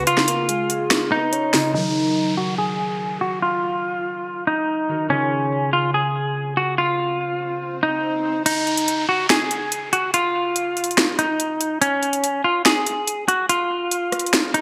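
Hip hop trap at 143 BPM in a hard-hitting, eerie half-time feel, led up front by a clean, hollow-bodied semi-hollow electric guitar melody shaded by a low-pass filter and delay, with a round, detuned octave-layered synth lead tracing a dark second line in the background for the opening 1.7 seconds, a ringing, fingerpicked concert harp accompanying until 8.5 seconds, an overdriven trap drum kit with a sharp snare and bright hats cracking through gated reverb in a brief opening burst before breaking off and returning with the kick muted, and an electronic downlifter and swell adding texture from 1.7 to 11.8 seconds, the mix sitting in a lush hall reverb with bright 1980s-style digital production.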